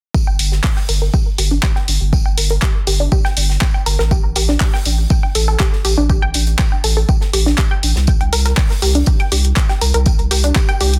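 Progressive house with a driving, expansive mood, this short excerpt cut from a longer piece centres on a lush, detuned sawtooth unison pluck playing arpeggios through sidechain pumping and digital delay, with a filter sweep running across it as the harmony moves from Gm to A7(no3) to C5. Up front sit a deep, tape-warm electronic kick and a thick, saturated sine sub bass that pumps with the sidechain. Around them, a layered deep house kit adds handclaps and hi-hat, while a dry acoustic funk kit adds high-tuned snare, hi-hat and tambourine, all inside a small room and a dense, heavily limited modern master.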